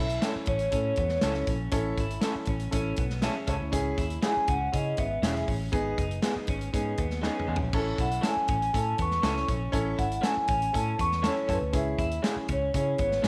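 Uptempo 1960s-style soul, passionate and driving, where a mellow, ringing vibraphone carries the melody over a slightly broken-up guitar riff, twangy guitar stabs, a woody upright piano, a dark, round muted bass and a punchy, up-front drum kit whose fill at 7.2 seconds leads back to the A chord, all set in an echo-chamber reverb in this cut from a longer piece.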